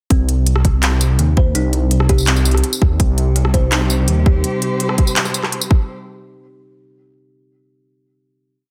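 A hard-clipped, overdriven electronic kick sits up front in this heavy, cinematic half-time drum and bass piece at 166 BPM in C minor, joined by a sparse industrial kit of crisp closed hats, clap, rim and tambourine re-recorded in a large room. A deep, rumbling detuned saw bass plays chopped phrases while a woody kalimba with delay loops a 12-step arpeggio that drifts against the bar, and both stop at 4.4 seconds. From 3.0 seconds a dark, bowed cello section adds slowly shifting chords with vibrato and sidechain pumping, on a dense, heavily limited master.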